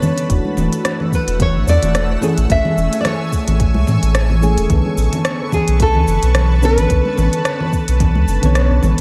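Bathed in light digital ambience and heavy echo, this short piece of sunset chillout cut from a longer work feels relaxed and wistful, with a gentle swing. Soft, round electric-piano-like synth keys, treated with chorus, phaser and dub echo, play the accompaniment from the start, while a shimmering, ethereal ambient pad with detuned unison and an octave-up glow holds sustained chords alongside them. A smooth R&B drum kit with cabasa, hi-hat and rim click carries a tape-warm, produced sound and tape echo, joined by bright, close congas sitting very quiet in the mix. At 0.3 seconds a deep, round sine sub bass arrives up front alongside a soft electronic kick re-recorded in a large room, as the chords move from E9sus4 to Amaj7 to Bm9. A fingerpicked nylon-string guitar with fresh strings enters at 1.1 seconds to carry a classical-toned melody through dub echo, and the full band lands a shared accent at 8.6 seconds.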